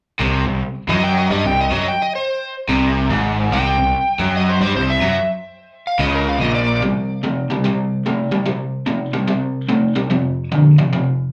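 An overdriven slide guitar carries a warm, gritty melody over a bright, double-tracked guitar riff with slapback echo and a growly fuzz bass in this driving, swung rock cut at 146 BPM, heard live through a club PA with light reverb, where the bass and slide drop out at 6.8 seconds to leave the guitar riff alone until 11.3 seconds.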